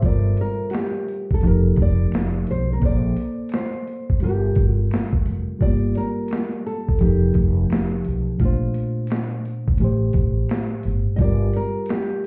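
Lo-fi hip hop at 86 BPM in G minor, this hazy, melancholic excerpt has a swung 16th-note feel and sounds muffled, as if heard through a wall amid club ambience in a small room. Up front, a reedy, worn, slightly out-of-tune electric piano with low-pass filtering and plate reverb carries the extended chords beside a gritty, compressed boom bap kit with a thumpy kick and high-tuned snare, while a woody pizzicato upright bass holds the low end until 11.5 seconds. A full-bodied, fingerpicked nylon-string guitar plays the melody through a low-pass filter and plate reverb, with audible finger squeak, and close, very quiet finger snaps join from 0.7 seconds.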